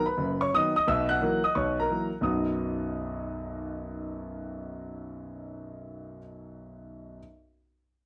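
Stride piano jazz with an exuberant, playful mood and swung eighth notes, carried by a single grand piano that spans from deep bass to bright upper register across this 7.2-second fragment of a longer piece. The piano sounds warm and boxy, with long sustain, and sits up front in a moderate studio reverb that keeps the top end soft. Its harmony moves from B to F#7/B and returns to B at 2.2 seconds, where a new passage begins and runs to about 5.0 seconds.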